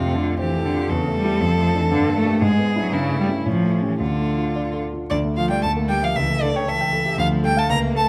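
A violin, cello and piano trio opens together in this lively, graceful fragment of a quick classical-period movement in 2/4 with a rubato feel, the rich, focused violin carrying the vibrato-laden melody up front while the more distant bowed cello sings a second line and the deep-bassed, short-sustained concert grand supplies accompaniment, all set in a wet recital-hall reverb captured by close, detailed microphones, before a new section begins at 5.1 seconds.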